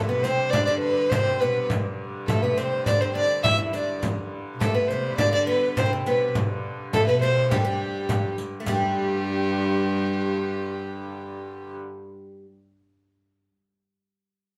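In a straight 2/4 at 103 BPM, a small, bright frame drum struck with hard hands drives this ancient, rustic medieval dance in G major, while a riq's close jingles sit in the background. Up front, a dark, woody fiddle carries the melody with light vibrato and a smooth top, played by a single bowed player. Beneath it, a clear, airy viola da gamba and a plectrum-plucked, double-strung oud share a second line, the gamba pure and ringing, while a rich hurdy-gurdy holds a nasal, boxy drone. The band plays live in one room, bathed in wet studio reverb. After the opening section, the percussion drops out at 8.9 s, leaving the strings to a brief closing passage, with the oud ringing on until 12.4 s in this fragment cut from a longer piece.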